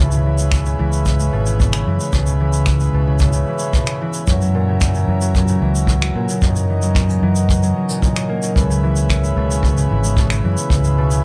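Light reverb softens this wistful, autumnal folktronica excerpt at 112 BPM in C# dorian, where ringing, fingerpicked concert harp arpeggios carry digital delay over a reedy, breathing pedal harmonium in plate reverb, a growly amped fingered electric bass, shaker and finger snaps, and a boomy brushed kick drum entering at 0.5 seconds, with the harmony moving from C#m7 to F#7 at 4.3 seconds and back to C#m7 at 8.6 seconds.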